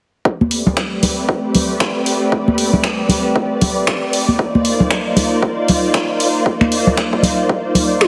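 Heavily compressed with a radio-like, multiband-squeezed sound, vinyl crackle and a moderate, lush hall reverb, this short deep house excerpt feels hypnotic and warm. A soft, vintage string machine carries sustained chords from 0.5 seconds, its silky pulse-wave and sawtooth tones warbling through an ensemble chorus, with slow attacks, long releases and sidechain pumping. The harmony moves from Am11 to Cm11 at 4.1 seconds, and the whole piece is tuned to A4 = 435 Hz. Up front, a punchy, layered electronic kick, high-pass filtered and re-recorded in a small room, starts at 0.3 seconds. A produced deep house kit adds finger snaps, dark hi-hats and toms with a swung sixteenth-note feel, while close, ringing acoustic congas fill out the percussion.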